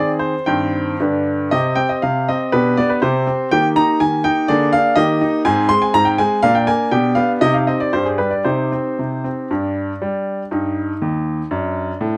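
A clear baby grand piano plays alone throughout this short, elegant and dramatic excerpt of a classical-period sonatina in C minor, moving in 2/4 with a rubato feel between 110 and 126 BPM, its intimate, up-front tone carrying audible action noise and long sustain in light reverb, reaching from Eb2 to C6, as the harmony passes through Eb, Ab and Bb before returning to the opening material at 9.5 seconds and closing on D/F#.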